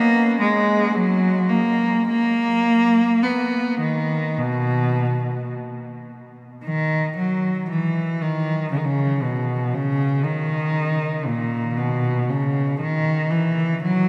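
A single bowed cello opens alone, rich and focused with vibrato and a smooth top, sitting up front in the low register of this radiant, dance-like baroque-style suite movement in B major. The playing moves with rubato at roughly 51-59 BPM in 4/4, with a new section arriving at 6.7 seconds before the fragment breaks off at 14.1 seconds, cut from a longer piece. A cathedral reverb with a long 6.4-second tail places the instrument in a vast, echoing space.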